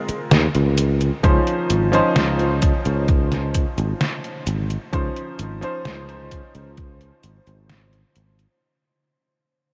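A clangy electric grand piano, treated with lush chorus, vintage 12-bit sampler grit and diffuse ambient delay, moves from Ab69 to Dbmaj9 in this nostalgic, woozy vaporwave piece at a slow 65 BPM in straight 4/4. A growly fretless electric bass sustains beneath it, while a detuned 8-bit drum machine supplies cabasa, hi-hat and a medium-tuned snare, joined by a thumpy electronic kick from 1.2 to 7.0 seconds. The dreamy mix is soaked in huge ambient reverb with a cassette-tape haze, and this fragment of a longer piece fades out across its 8.6 seconds.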